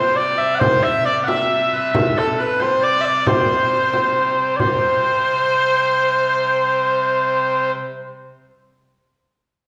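A 6/8 pulse, played straight, carries this short medieval dance, cut from a longer piece, with a small frame drum played with soft hands close at hand from 0.4 s until 4.8 s. Sweet, mellow small bagpipes sing the vibrato-laced melody up front, while a distant, roomy shawm with a bright folk edge and soft attack adds a second line alongside, all over a brassy pipe organ drone voiced with a trumpet stop in baroque fashion. A reverberant recital hall, heard from further back, lends an ancient, rustic air, and the tune moves into a new section at 4.6 s.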